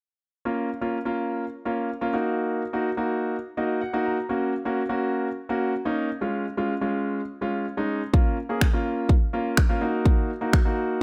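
An intimate concert grand piano carries this energetic, bittersweet dance-pop excerpt, its deep bass, long sustain and audible action noise sitting up front as it pumps against a sidechain through a minor-key progression, with a brief fill at 3.3 seconds. At 8.1 seconds a layered, electronic house kit joins with finger snaps and a punchy kick. Light reverb and a small-room ambience give the polished sound a close, present feel.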